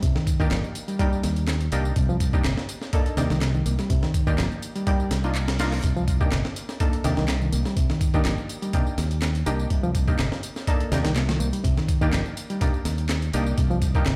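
A punchy, detuned orchestra-hit-style synth stab with a sawtooth bite and ring-modulated edge cuts through this energetic, playful breakbeat excerpt from 0.4 seconds, its fast-attack hits decaying into reverb and delay over a single Cm7 chord. Beneath it, a gritty, compressed sampler-style breakbeat kit with a thumpy kick drives a lightly swung groove alongside layered electronic tambourine and handclaps, while an up-front fingered electric bass and a bright, reedy electric piano riff with delay fill out the sound. A very quiet reverse cymbal sounds briefly at 5.1 seconds, and the whole mix rings through a stone room with a faint mains hum, as if played on a big sound system.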